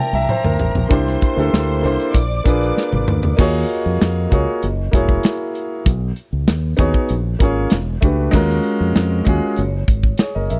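A lush, bittersweet 1970s-style soul passage opens with a drum fill beneath smooth, bowed strings and a deep-toned grand piano, with the strings dropping away at 3.4 s as the second section begins. A punchy, overdriven fingered bass and an up-front acoustic kit with a tight kick carry the groove, while a metallic, ringing vibraphone sits in the background and returns briefly at 9.6 s. The dry, close studio sound keeps the smooth, extended chord changes intimate.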